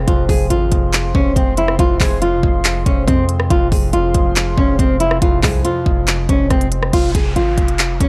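Harp, a dark pad and a punchy 808-style bass open this eerie, hard-hitting trap cut in F minor at 140 BPM half-time, before a fingerpicked nylon-string guitar melody with finger squeak, low-pass filter and analog delay sits up front over a knocking kick, crisp hats, claps and rim clicks, while a mellow harp rings on and a moody sawtooth pad with chorus and phaser hangs back until the pad stops at 6.9 seconds and a downlifter carries the gritty, dry mix to its cut-off.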